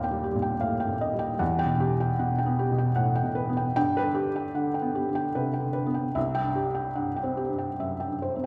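Neoclassical minimalist piano in a rubato 3/4, wistful and intimate, taken from a longer piece and lasting 8.5 seconds. A felt-muted upright piano plays alone, sitting up front with a mellow, muted tone, short sustain and audible action noise. Its chords move from D#add9 to Emadd9, then G and C, while the recital hall's wet reverb lends the close sound a sense of space.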